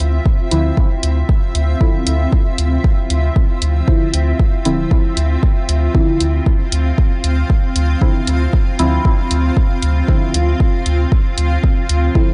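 Hypnotic and cavernous, this dub techno excerpt moves at 116 BPM in D minor with a light swing, resting on a single Dm9 chord throughout. A deep, tape-warm electronic kick sits up front beside a clean, smooth sine sub bass with transformer saturation and sidechain pumping, while a small-room electronic hi-hat ticks underneath from the start. From 0.5 seconds a soft, detuned chord stab, dark with ring modulation and a moving notch, drifts through chorus, phaser and dub echo over a blurred, evolving granular cloud pad, all captured in a dry, gritty hardware sound.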